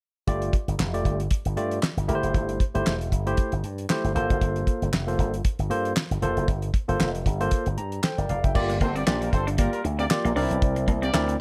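A swung 16th-note groove at 116 BPM in 4/4 drives this late-night, funky early-eighties boogie funk in G dorian, where a dry, damped 70s drum kit with a fat snare, tight kick and dark cymbals sits up front beside a punchy slap bass through an envelope filter and a barky, lightly overdriven tine electric piano that plays a fill from 7.5 seconds, while very quiet, crisp group handclaps run throughout, and at 8.7 seconds a clean, picked electric guitar riff with lush chorus enters, followed at 8.8 seconds by a loose, vintage horn section with vibrato playing a second line over Gm7 and C9.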